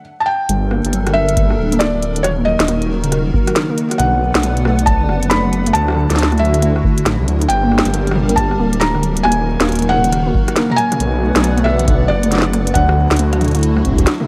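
Intricate and melancholic, this IDM excerpt moves at 137 BPM in 4/4 with a 62% swing on the 16ths, tuned to A4 = 441 Hz. A felt-muted upright piano carries the melody from 0.2 seconds; its soft, intimate tone reveals audible action noise and trails into tape echo. Beneath it, a hollow, flute-like pad holds sustained chords through ensemble chorus and vintage 12-bit sampler grit. A warbly, dusty pluck spins lo-fi arpeggios with subtle chorus and its own tape echo. A dark detuned saw bass sits up front with rumbling, tube-saturated weight, while a glitchy, overdriven drum kit of clicky hats, rim clicks, a tiny snare and toms is joined at 1.4 seconds by a deep analog electronic kick. The harmony cycles twice through Gmadd9, Ebm, Bm and Dadd9 under a light reverb.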